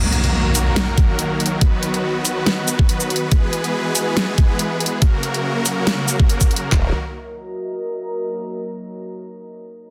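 Dense, heavily limited and lightly reverberant, this menacing, aggressive heavy wobble dubstep excerpt runs at 141 BPM with a swung half-time feel in Eb phrygian, opening on an electronic impact under lush, airy, detuned supersaw chords that pump with the sidechain, while a deep, moody ambient pad with chorus drifts in at 1.3 seconds, two layered, tape-warm electronic drum kits sit up front with a knocking kick, huge snare, bright hats, shaker, handclaps and toms, and a chorused, overdriven formant-sweep wobble bass snarls in on a low Eb at 6.7 seconds as the chords move through Ebm, B, E and Gb.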